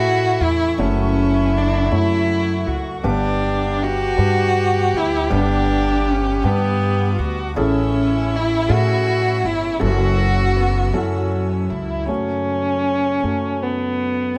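An acoustic folk-pop ballad in a slow, melancholic and reflective 6/8 at 53 BPM in F# phrygian, where a warm, expressive bowed cello sings the melody up front with vibrato and portamento until 11.3 s, a dark, woody violin traces a distant second line and then takes a solo from 12.1 s, a soft felt-muted upright piano with audible action noise gives intimate accompaniment, a chamber string section holds biting yet earthy sustained chords in the background, and a pizzicato upright bass anchors the low end, within a light reverb.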